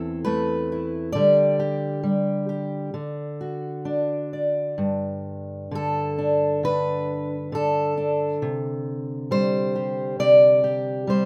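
A fingerpicked steel-string acoustic guitar carries this short folk passage alone, sitting up front with a warm, auditorium-like body to its tone. The mood is pastoral and unhurried, moving at around 67 BPM in 4/4 with a loose, rubato feel in G major, tuned slightly high to A4 = 441 Hz. Across its range from E2 to D5, the guitar moves through a sequence of harmonies: Amadd9, then Dsus4 resolving to D at 3.0 seconds, a Gadd9 from 4.8 seconds, and Csus2 at 8.4 seconds. A moderate studio reverb gives the instrument a gentle sense of space around its notes. Cut from a longer piece, the fragment runs just over 11 seconds.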